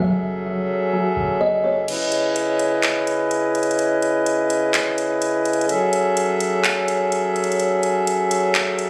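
This excerpt of atmospheric cloud-rap moves at 126 BPM in a half-time feel, ethereal and hazy in C# minor, with chords shifting from F#m7 to C#m7 and back to F#m7 at 5.7 seconds. A reedy, breathing pedal harmonium sits up front throughout, holding mellow, vintage-toned sustained chords. For the opening 1.9 seconds, a buzzing kalimba with a woody, hollow-box pluck carries a short melody through a low-pass filter and delay. Beside it, a soft round pluck with a wave-folded edge plays arpeggios through chorus and delay, over a clean, boomy 808-style bass. At 1.9 seconds a smooth R&B drum kit takes over with metallic hi-hats, handclaps and crash cymbal, electronic and produced, with the kick muted. The whole mix carries a lush hall reverb and compression, with a slightly roomy, phone-captured character.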